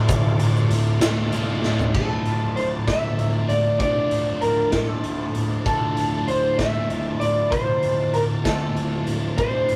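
Psychedelic rock in a slow, hypnotic 6/8 at 65 BPM, this trippy fragment of a longer piece sits on a D minor chord in a rough rehearsal-room recording with a short, wet booth ambience. A double-tracked fuzz guitar drives the riff up front with distortion and phaser, while a round, overdriven picked bass holds a low D in the background. The raw garage drum kit hits punchy kick, medium-tuned snare, hi-hat, toms and crash with a saturated, gritty character, a pumping stone-room sound and a rolled-off top. A grainy egg shaker ticks quietly from 0.1 seconds and stops as a drum fill ends at 1.9 seconds, and from 2.0 seconds an electric slide guitar, played with fingerpicks and slightly broken-up, takes the melody up front. Behind it all, a bright, shouting tonewheel organ sustains chords through a slow rotary speaker with light overdrive and chorus vibrato.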